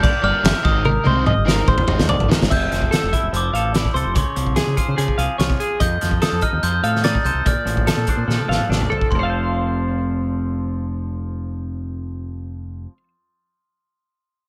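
A straight 4/4 pulse at 145 BPM drives this intricate, bright math rock and midwest emo excerpt in F major, where a loose, up-front drum kit with a fat snare, punchy kick and dark cymbals plays until 9.2 seconds, with fills along the way, while a growling, overdriven fingered bass holds the low end. A sparkling, bell-like glockenspiel carries the melody through plate reverb and digital delay over clean twelve-string electric guitar arpeggios, and a dark, double-tracked overdriven guitar riff sits in the background until 2.5 seconds, when a twangy clean electric guitar enters with accompaniment. Chords move from Gm7 and Abmaj7 through lush Fmaj9, Dbmaj7, F13 and Bbmaj7 before settling on F at 9.1 seconds.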